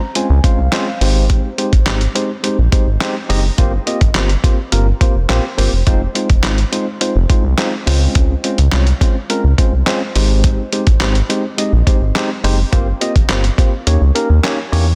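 A dense, heavily limited modern mix with light digital ambience frames this bittersweet yet confident dance-pop excerpt at 105 BPM, moving through Dbmaj7, Abmaj7, C7sus4/G and Fm7 before landing on Eb7. A clean tine electric piano with sidechain pumping opens alone with a fill, then a muffled, compressed sampler-style drum kit enters at 0.2 seconds with a thumpy kick, medium-tuned snare, hi-hat and handclaps. A round, deep analog bass, dark and evolving with sidechain pumping, joins at 0.3 seconds and sits up front; the kick drops out from 13.9 seconds.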